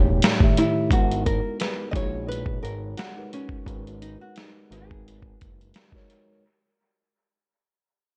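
Lo-fi hip hop at 87 BPM in G# minor, nostalgic and melancholic, this short fading excerpt sets a woody, fingerpicked nylon-string guitar melody with dub echo and a low-pass filter over a mellow tine electric piano, a fat, nasal, detuned analog bass, and a gritty, compressed sampler-style drum kit with a thumpy kick that enters at 0.2 seconds, all in an echo-heavy mix moving from A7#11 to G#m9.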